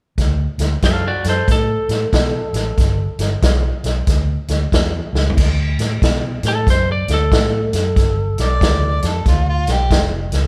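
A bright, twangy lead guitar with a slightly broken-up edge carries the melody of this gritty, soulful electric blues shuffle, riding over a round, foam-muted bass and a vintage drum kit with a tight kick and rolled-off top that fills at 5.0 seconds, before a clear, overdriven harmonica with light vibrato and scooped notes enters at 8.4 seconds, the band playing live together in a large studio with moderate reverb.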